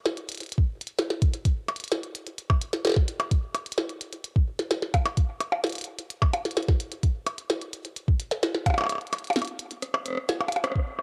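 A lightly reverberant small-room home cassette recording carries this intricate, glitchy IDM excerpt, where an up-front, overdriven drum kit of clicky low-passed hi-hats, a tiny filtered snare, a rim click and muffled percussion blips rides over a soft, overdriven electronic kick that drops out at 8.9 seconds, leaving a drum fill at 9.8 seconds and a band accent at 10.6 seconds to close the cut.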